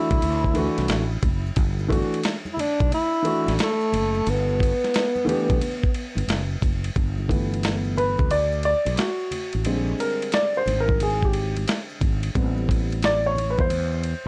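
A swung 89 BPM groove in 4/4 comes from a gritty, thumpy sampler-style drum kit with vintage 12-bit crunch, a growly, punchy fretless electric bass and very quiet maracas and congas played with hard hands, setting a cool, warm jazz-hop mood in G major. A breathy tenor saxophone carries the whispered, subtone melody with vibrato, scooped notes and tape echo until 6.3 seconds, over a dark, worn concert grand piano with audible action noise. At 7.0 seconds the piano takes a solo for the rest of this excerpt, moving through chords such as Bb13 and Am9 in a dark, warm, intimate production with moderate reverb.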